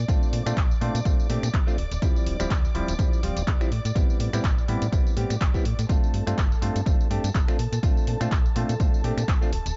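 A dark, rolled-off production with digital ambience frames this sunny, joyful filtered disco house excerpt at 124 BPM, its 16ths swung and its harmony moving from Bbmaj7 through Dm11, Am9 and G7sus4. An up-front, punchy electronic kick, re-recorded in a small room, sits alongside an analog drum machine of finger snaps, handclaps, hi-hat and tambourine with sidechain pumping. Beneath it, a snappy FM slap-style bass with a metallic attack and a stringy, mellow clav coloured by phaser and 12-bit sampler grit both pump with the sidechain, while a woody, lush studio violin section holds sustained chords with vibrato.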